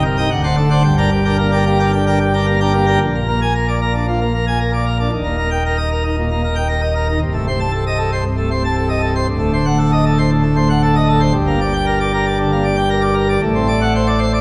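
A solo pipe organ opens on full plenum, its mixtures giving a brilliant, up-front sound with audible chiff on the pipes and a baroque voicing. This is a classical organ toccata in G minor at 115 BPM in a straight 4/4, and the mood is majestic and stormy. After a short opening that moves from D7 to G minor, a new section begins at 3.0 seconds, passing through Bb7, Eb and a diminished chord over C before a tense D7b9. The harmony returns to G minor and then rests on D7 over A, and the passage breaks off at 14.4 seconds as a cut from a longer piece. The organ covers a broad range from C1 to A5, set in a reverberant recital hall whose ringing tail lends the full chords a grand sense of space.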